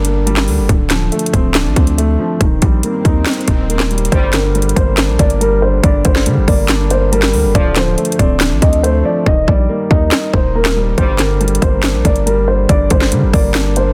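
A trap drum kit sits up front in this dark, hard-hitting trap excerpt at 140 BPM in a half-time feel, its sharp snare, handclaps, hard-clipped kick and metallic hi-hats driving the whole cut, with the hats dropping out between 9.3 and 11.0 seconds. Beneath it, a punchy 808-style bass with a sine body, noise layer and fast, decaying attack runs throughout, while a felt-muted upright piano, soft and thin with audible action noise and a low-pass filter, carries the chords from Gm through Dm7 and Eb. The opening is a break, and a very quiet electronic swell rises from 2.5 seconds into the entry of the main section at 4.1 seconds. There a dark, boxy concert grand piano takes the melody in a narrow upper range, filtered and treated with delay, its deep bass and mechanical noise giving it an intimate feel. A distant brass section with light vibrato adds brief classical-style stabs in the background, and the whole piece sits in studio reverb under a dense, heavily limited modern master.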